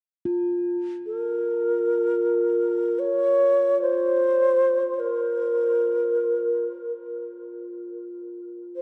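In free time, this haunting, meditative world excerpt opens at 0.3 s with a soft bronze singing bowl struck with a felt mallet, its metallic ring holding on F4 with a slow beating shimmer beneath the melody. At 1.1 s an airy, end-blown bamboo xiao enters up front, playing an expressive, tongued line between Bb4 and Db5 with vibrato and a touch of delay. A huge, wet reverb with a long tail and a dark, warm production surround both parts.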